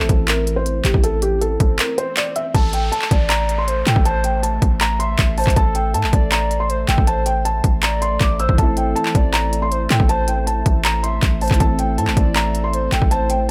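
Eerie and melancholic, this excerpt from a longer trap piece moves at 159 BPM with a half-time feel in A phrygian, resting on an A minor chord. A felt-muted upright piano carries the melody from the start, its muffled, intimate tone edged with audible action noise. Round, gentle electric-piano-like synth keys add chorused, phased accompaniment early on and return from 8.5 seconds. A deep, boomy 808-style bass and an up-front trap kit of hard-clipped kick, crisp hi-hats and handclaps drive the track. The kick drops out briefly as an electronic swell rises in the background just before 2.5 seconds, its downlifter trailing off by 5.6 seconds. From there a hollow, woody clarinet-like synth lead enters with warbling vibrato, portamento and delay, joined at 3.0 seconds by a glassy, ethereal FM pad that sustains chords under a digital ambience.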